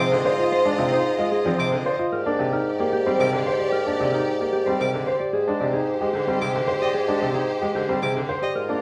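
Heard in a reverberant stone room, this bright, hypnotic excerpt of minimalist classical pattern music in 3/4 sets a dark, clean electric guitar melody in the background against brilliant, polished grand piano accompaniment, focused sustained chords from a studio string section, natural-sounding grand piano arpeggios, expressive violin arpeggios with portamento, and a mellow solo bassoon holding the bass, as the harmony moves from Fm7/Ab to Ebmaj7/Ab at 2.1 s and settles on Abmaj7 at 5.3 s.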